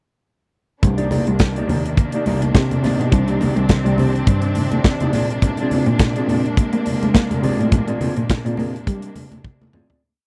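Driving and glamorous, this short disco piece rides a swung sixteenth-note groove in 4/4, with every part entering together at 0.8 seconds over a verse that moves from Cm9 to Bb9. The acoustic drum kit sits up front with a punchy kick, a medium-tuned snare and open hats on the off-beats of a four-on-the-floor beat, and a drum fill arrives at 9.4 seconds. A single bowed cello takes the bass role, its woody, vibrato-laden tone carrying a syncopated line with chromatic approach notes. Above it, a clean, fingered electric guitar with lush chorus plays choppy sixteenth-note disco figures, and a distant bowed string section holds sustained chords as a dark pad. Low-tuned congas with a thick skin tap out a syncopated groove far in the background, and the dry, close 1970s-style studio sound begins fading out at 7.7 seconds.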